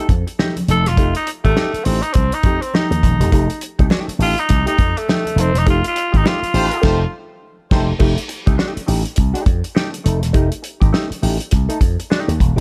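Funk at 102 BPM in 4/4 with a swung sixteenth feel, this playful clip sits in F mixolydian over an F9 chord and is cut from a longer piece. A breathy, raspy tenor saxophone takes an up-front solo from the start until 7.1 seconds, with a gritty, vintage edge. Beneath it, a dark, clean hollow-body jazz guitar with wah supplies accompaniment, while a growly slap bass pushed through an envelope filter punches out the low end alongside a damped 70s drum kit with a fat snare, tight kick and dark cymbals. Soft-handed, ringing congas sit very quietly in the background until 6.4 seconds. A band accent arrives around 5.7 seconds, and a distant, roomy horn section with light vibrato adds a tight second line from 6.5 seconds before the music moves into a new section at 8.0 seconds, all under light reverb.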